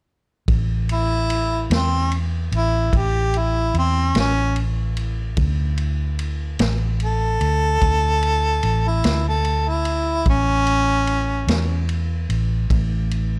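Laid-back and swaggering, this slow blues in 12/8 moves at 49 BPM in A mixolydian. A harmonica solo, smooth-topped and jazz-inflected with light vibrato and scooped notes, sits up front in a plate reverb from 0.9 to 11.9 seconds. Beneath it, a round, foam-muted electric bass and a vintage drum kit with punchy kick, medium-tuned snare and ride cymbal hold the groove from 0.5 seconds, the drums through 13.3 seconds and the bass through 13.4, in a dark, dry production.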